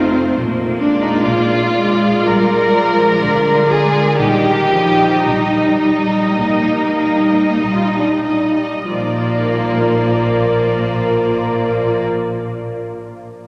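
This classical excerpt is a slow, romantic movement for string orchestra in Bb major, tender and lyrical, moving in a rubato 4/4 between 43 and 71 BPM and slowing down through its opening section. A violin section carries the melody in a rich, focused tone that sits distant in the mix, while a second violin line, clear and up front, enters at 0.8 seconds. Beneath them, a close viola section with a smooth, even sound supplies the accompaniment, and a lush cello section in the background joins the double basses, whose bowed vibrato tone is rich and focused, to form the bass. The harmony passes from Bb7 to Eb over Bb before settling on Bb as a new section begins at 8.9 seconds. A wet cathedral reverb with a long five-second decay surrounds the strings.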